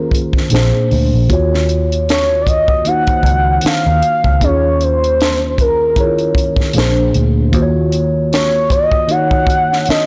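Soulful and introspective, this brief cut from a longer R&B and neo-soul piece moves at an unhurried 77 BPM in 4/4, with a gentle 16th-note swing and an Eb dorian colour. A smooth, gliding synth lead carries the melody between Bb4 and Gb5, its detuned sawtooth-and-sine tone softened by a gentle attack, sustained notes, vibrato, portamento and chorus. Beneath it, a mellow tine electric piano plays the accompaniment through a phaser, cycling through Db69/Eb, Bb7 and Ebm9. A dark, round, foam-muted electric bass adds punchy low notes with transformer saturation and falls silent at 9.9 seconds, while a dry, tight funk drum kit with a high-tuned snare and firm kick comes in at 0.1 seconds. The small room's light reverb sits under an overall sound that is blown-out and overdriven.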